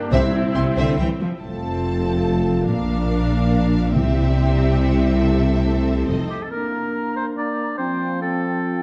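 In a straight triple metre, this adventurous, triumphant cinematic fragment opens with soft-attack, roomy trumpet stabs and timpani hits over lush bowed strings: a violin melody with vibrato, a second violin line, clear violas and cellos, and an up-front double bass section; a French horn section adds sustained chords from 1.4 s, then a solo oboe, solo clarinet and a pure, crisp-edged large flute ensemble take up second lines near 6.5 s, the whole wrapped in a dark concert hall reverb.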